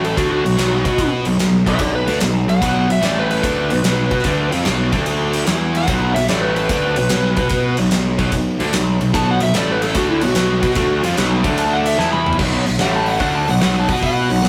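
A brooding, smoky blues rock and southern rock passage in B minor opens with the full power trio at once: an overdriven slide guitar sings a solo over a bright, double-tracked distorted guitar riff and a growly, fuzz-laden picked bass, both sitting up front, while a big rock kit with a fat snare, punchy kick and glittering cymbals drives a swung 147 BPM groove. The riff cycles through Bm, A5, D5 and E5 chords, and a drum fill at 12.0 s leads into the next pass of the same section. A moderate stone room reverb gives the whole thing a rough, live rehearsal-room feel, and the passage is cut from a longer piece.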